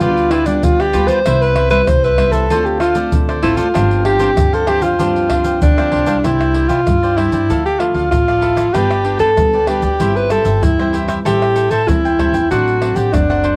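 A straight 4/4 groove at 96 BPM drives this playful, joyful samba and choro excerpt in C major: a breathy alto saxophone with subtone and light vibrato carries the jazz-style melody up front, over a crisp, picked cavaquinho and a fingerpicked classical nylon-string guitar, all three tinted by cassette tape and plate reverb, while a woody, dark pizzicato upright bass and a close, dry blend of egg shaker, tight surdo, pandeiro and tamborim anchor the homemade cassette sound.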